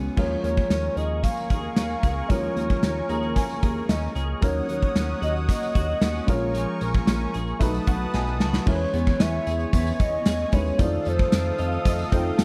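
A straight 4/4 pulse at 113 BPM drives this urgent, nostalgic slice of 1980s-style pop. A gated drum kit sits up front with bright cymbals and a tight kick, joined by a faint, jingly tambourine, while a glossy chorused synth bass and a twangy twelve-string electric guitar riff carry the groove over Bbm7 and Ebm7 chords. A present baby grand piano accompanies with fills around 2.8 and 7.6 seconds, a brassy, detuned analog pad holds sustained chords, and a hollow, woody clarinet-like synth lead with tape echo sings the melody. After a drum fill the harmony moves to E6 and F7, and a shimmering FM bell slips in softly at 11.6 seconds, set in a small room reverb.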